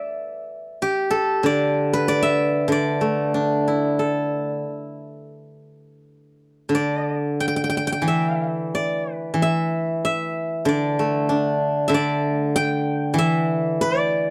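A steel-string zither, played with fingerpicks, carries this short solo piece of Chinese traditional plucked-string music alone from 0.0 to 14.3 seconds, its bright, silvery tone ringing up front. The mood is pastoral and serene, set in the D zhi mode with a tuning reference of A4 = 438 Hz. The playing moves in a rubato feel over a 4/4 metre, with a tempo that drifts between about 84 and 98 BPM. The zither covers a range from D3 to G5, and the music shifts into a new section at 6.7 seconds. The sound is dry and close, with little reverb, in the manner of a 1970s studio recording, and the passage is cut from a longer piece.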